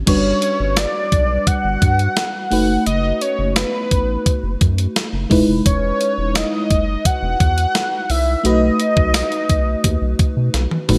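A straight 4/4 groove at 86 BPM comes from a clean 12-bit drum machine, sitting up front with a thumpy kick, medium-tuned snare, hi-hat, tambourine, crash and toms under gated reverb, closing with a drum fill at 10.5 seconds in this romantic, nostalgic 1980s-style pop passage cut from a longer piece. A round, deep analog bass anchors the low end while a lush, dreamy FM electric piano with a soft pad layer and chorus carries the chords, moving from Gmaj7 through B7/F# and Emaj7 to B7. On top, a thick, bold unison lead with detuned sawtooth tone and vibrato sings the melody up front, all wrapped in light reverb.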